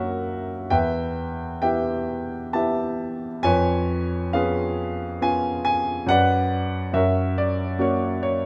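Moving in a flexible triple metre with a freely breathing rubato, this brief classical fragment, cut from a longer piece, unfolds at a slow, lyrical pace. A solo grand piano carries everything for the full 8.5 seconds, its tone natural and warm and placed up front, spanning the keyboard from E2 to A5. The mood is melancholic and dark, as the harmony shifts from an F-sharp chord into E minor, then leans on a C-sharp seventh over E-sharp around 3.4 seconds before settling on B minor over F-sharp and returning to F-sharp. A moderate recital-hall reverberation lends the instrument a natural sense of space.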